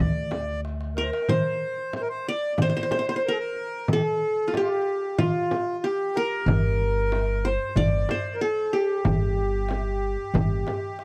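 Arabic maqam ensemble music in a longing, melancholic mood, this excerpt puts a bright-edged, plectrum-plucked qanun melody up front over a reedy accordion second line with slow beating, while a woody pizzicato upright bass drops out at 1.1 seconds and returns at 6.5, a distant clay-shell darbuka struck with hard hands and a small, close frame drum played with soft hands drive the percussion, a drum fill comes early on, and the recording has a dry, close 1970s-style studio character with small room ambience.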